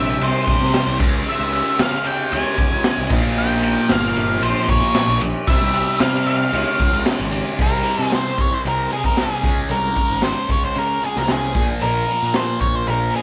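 A live-in-one-room sound with light reverb frames this hypnotic, mysterious psychedelic rock excerpt, where a dark, up-front octave-fuzz lead guitar carries the melody over a bright, double-tracked fuzz guitar riff with phaser, an overdriven fuzz picked electric bass, and a gritty, saturated garage drum kit with punchy kick and dark cymbals that enters at 0.2 seconds, the harmony shifting at 7.6 seconds from C, Db and Bbm chords to power chords.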